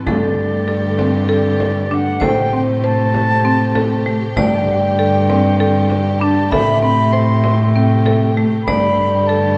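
Contemporary instrumental chamber music in 7/8 at 195 BPM, counted in eighths, with an urgent, restless mood in this short excerpt. A lush, bowed string section holds sustained chords alternating between Gsus2 and Am7, while a single cello, up front with a gut-string, reedy tone and light vibrato, anchors the bass between G2 and A2. A bright wooden flute carries the melody, close-miked and expressive, its pure, tongued notes sitting between D5 and C6. Beside it, a vibraphone struck with hard mallets adds a ringing, airy second line with medium motor vibrato, and a buzzing marimba, dry and vintage in character, spins hardwood arpeggios from A3 to C5. A deep, distant frame drum stays very quiet beneath it all, and the whole ensemble sits in a concert hall reverb with a 1.8 s decay and a dark production.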